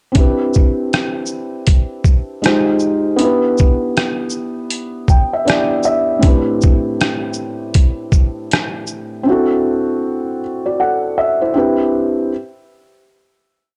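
A muted, felt-thick upright piano holds dark, rootless chords up front with audible action noise and a short fill at 4.7 seconds, moving from Cmaj9 through Fm7, Em7, Am11 and D9, in this dreamy, cosy lo-fi hip hop piece at 79 BPM with a 16th-note swing, while a compressed, pitched-down sampler-style trip hop kit of thumpy kick, rim click, shaker and quarter-note hi-hats plays a sparse beat until 9.1 seconds, all in a dry, gritty cassette recording with light reverb.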